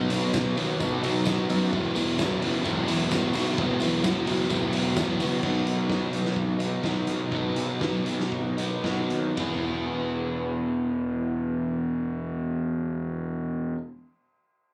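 Captured on a phone in a club-like room with light reverb, this upbeat yet wistful indie rock excerpt puts a crunchy, double-tracked overdriven guitar riff up front beside a growly fuzz electric bass. A raw garage drum kit with a punchy kick, medium-tuned snare and rolled-off top drives the groove, while a jingly tambourine sits in the background until 5.3 seconds. The music slows down from 5.4 seconds, and the drums drop out at 9.5 seconds, leaving guitar and bass to play on over the final chord.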